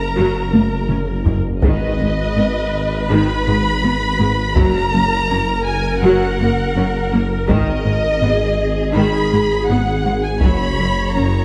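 This short cut from a cinematic hybrid orchestral and electronic film score opens at once with a lush violin section singing the melody up front over an intense, close viola section and a thick, detuned sawtooth bass with chorus, joined at 0.2 seconds by a focused chamber cello section in the background. A taiko ensemble with heavy sticks enters at 0.5 seconds with a fill, sounding from a live room behind the strings, as the harmony in G# minor moves between F# and G#m at a steady 82 BPM in 4/4. The mood is vast and relentless, the strings carrying vibrato and the violins an expressive, soft-attacked, smooth top, all set in a moderate scoring-stage reverb.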